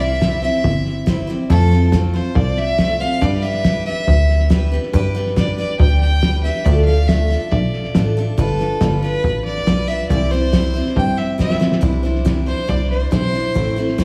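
A straight 4/4 shuffle-free pulse drives this heartfelt, down-home honky-tonk and classic country piece, cut from a longer performance. A cloth-damped, thuddy drum kit with a fat snare and tight kick sits muffled and gritty in the background, while a plucky analog bass with a fast, punchy filter attack sits up front. A bright, full-bodied picked steel-string acoustic guitar picks its way through a C, F, G, Dm and G7 progression as a rich, bowed fiddle carries the melody with light vibrato and a touch of analog delay. A second, warm-toned fiddle adds a brief line at 11.0 seconds, a drum fill arrives at 11.4 seconds, and the fiddle takes a solo from 11.8 seconds over a Cadd9 chord. The whole mix is soaked in a lush hall reverb blended with small room ambience, giving it a dreamy, homespun glow.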